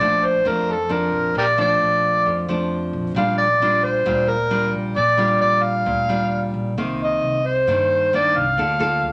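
A gritty, overdriven harmonica carries a jazz-style solo melody up front from the first moment, with light vibrato, scooped notes and tongue slaps, over a full-bodied, fingerpicked classical nylon-string guitar that also sits up front and a woody pizzicato upright bass in the background, giving this sunny, breezy bossa nova fragment in Bb major at 133 BPM its easy lilt through Bbmaj7, Gm7/Bb and Cm9 chords within the airy glow of a large studio room.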